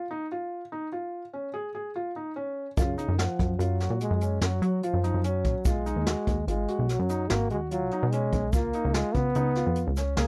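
A felt-muted upright piano opens alone with soft, intimate arpeggios, its action noise audible, before a dark, breathy trombone, a punchy, plucky analog bass, a brushed jazz kit with a boomy kick and a grainy tube shaker in the background all enter at 2.8 seconds. This driving, brooding progressive instrumental moves in 7/4 at 146 BPM through Dbadd9, Gbmaj7, B6 and Db9, with the trombone carrying a second line with light vibrato. The sound is dry and close, like a 1970s-style studio recording, and the clip is cut from a longer piece.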